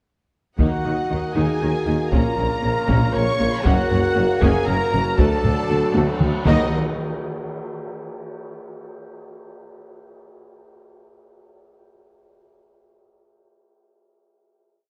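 A dark, dramatic cinematic cue in 3/4 at 118 BPM and in Eb minor opens at 0.6 seconds with the orchestra and a heavy taiko drum ostinato played with weighty sticks, close and dry, alongside hard-mallet timpani strokes on bass notes. A warm, expressive violin section carries the melody with vibrato and a soft attack, doubled in unison and at the octave by a second, focused violin section and by a trumpet section with light vibrato. Beneath them, very quiet violas and cellos drive rhythmic ostinatos and sustained lines, while a woody double bass section and a clear, vintage-toned tuba double the bass line, and a smooth studio string section and a bright trombone section hold sustained chords in the background. A distant, roomy French horn section joins at 1.1 seconds with a counter-melody and chords, and cymbal swells and gong strokes arrive at 3.7 seconds as the harmony moves from Eb minor through Bb minor and Gb to D. 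A drum fill leads into a final hit at 6.7 seconds, after which the taiko and the bright cymbals and tam-tam ring out to close the piece. The production is dark and warm, set in a moderate scoring-stage reverb.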